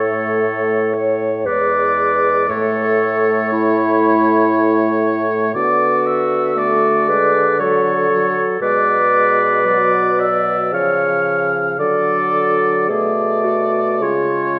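Melancholic and elegiac, this slow romantic movement for wind quintet moves in 3/4 at 58 BPM with uneven, rubato beats across a 14.6-second passage drawn from a longer piece, its harmony passing from A through Dmaj7 and G#dim/B to close on C#. The oboe, touched with light vibrato and sitting up front, carries a second line above a punchy, smooth-topped clarinet and a distant, roomy French horn in accompaniment, while a dark bassoon anchors the bass. A moderate scoring-stage reverb lends the ensemble a gently spacious setting.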